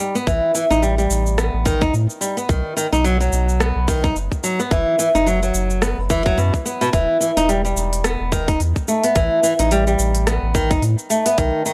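Up front, a fingerpicked flamenco guitar with fresh strings spins mystical arpeggios through analog delay, joined from 0.3 s by a deep, round sine sub bass with sidechain pumping and a tight electronic kick, while a crisp, tape-warm organic electronic kit of hi-hat, rim click and shaker adds a swung 16th-note lilt to this dry, gritty organic downtempo excerpt moving through A5, B, F#7sus4 and Em.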